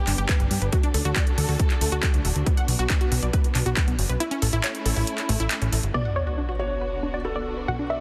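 Uplifting trance at 138 BPM in B minor, this short cut from a longer piece feels bittersweet and euphoric, moving through G, D, B minor and A before landing back on B minor at 5.9 seconds. A dark, bowed studio string section holds sustained chords with vibrato and portamento, while a lush, detuned unison pluck with a noise layer spins arpeggios through dub echo, and a funky, sawtooth-and-pulse analog bass sits up front. A punchy analog drum machine adds tape-warm crash, handclaps and hi-hat under low-pass filtering, and an overdriven, layered electronic kick drives hard until it drops out at 4.2 seconds. At 5.9 seconds an impact and an electronic sub drop arrive as a brighter unison pluck takes up the melody under a filter sweep, joined by a soft, felt-muted upright piano whose intimate tone, audible action noise and digital delay give a mellow second line. The strings, plucks and bass pump with sidechain compression, all set in light reverb within a dense, heavily limited modern master.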